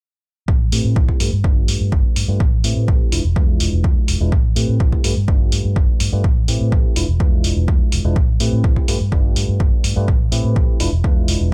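A straight 4/4 groove at 125 BPM drives this filtered disco house cut in A minor, taken from a longer piece and carrying a groovy, funky mood. A punchy analog kick drum sits up front from 0.5 seconds, joined at 0.7 seconds by an analog electronic hi-hat with sidechain pumping, both re-recorded in a small room. A dark, round, foam-muted fingered electric bass moves between E1 and A2, pumping with sidechain compression through a low-pass filter. Above it, a bright, bell-like tine electric piano plays clean and direct between G#3 and B4, colored by phaser, sidechain pumping and a low-pass filter. The harmony cycles through Am7, G7 and E7b9, and a filter sweep runs across the whole 11-second section inside a digital ambience.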